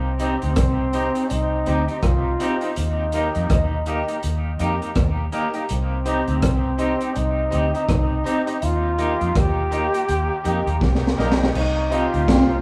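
Serious and hypnotic, this roots reggae excerpt sets a distant, clear trombone melody with dub echo over a round, foam-muted fingered bass, a twangy clean guitar with tremolo and dub echo, bright piano stabs with audible action noise in the background, and a gritty, saturated breakbeat kit with a high-tuned snare that plays a fill at 10.8 seconds, all in a wet, roomy live sound moving between C minor and E-flat.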